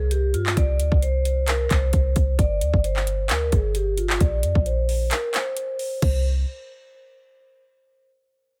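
A bright, ringing vibraphone struck with hard mallets opens this brooding, melancholic half-time trap excerpt at 132 BPM alongside a deep, boomy sine-like 808 bass that sits up front, with a trap kit of hard-clipped kick, metallic hi-hats, handclaps and crash entering at 0.1 seconds, while the close-miked, dry vibraphone runs through a low-pass filter sweep and delay over G5 and Bb harmony, all set in a digital ambience before a break at 5.1 seconds.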